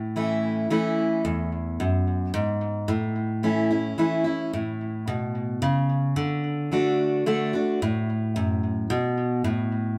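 In an unhurried, straight waltz-time pulse at 110 BPM, a full-bodied, up-front picked steel-string acoustic guitar plays alone through this easygoing, down-home country excerpt in A major, moving from A to E, back to A and on to D before the chords stop at 9.4 seconds, its notes trailed by analog delay within a moderate studio reverb.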